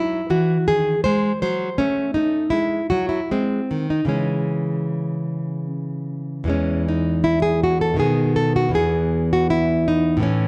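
A full-bodied, fingerpicked nylon-string guitar with fresh strings and audible finger squeak plays alone and up front through this serene, dance-like baroque-style classical excerpt in 3/4 at 77 BPM, its uneven beats and rubato moving from C# minor into E major at 6.5 s, set in a moderate recital hall reverb with a dark, warm production.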